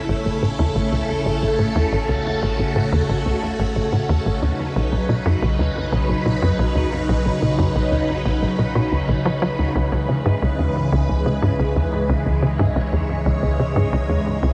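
Mysterious and expansive, this excerpt of ambient, sequencer-driven space music moves at 90 BPM in C# minor, its chords shifting from A to Badd9 at 4.4 seconds and to C#m7 at 9.8 seconds. A punchy sawtooth sequencer bass drives the riff with filter plucks colored by analog chorus and tape echo, while an up-front, swirling string machine holds bright sustained chords through ensemble chorus and phaser, over a round, very quiet sine sub bass. Deep in the background, a mellow, detuned texture bubbles with random resonant filter steps, chorus and its own reverb, and the whole piece sits in a vast, echoing space with a cassette-tape character.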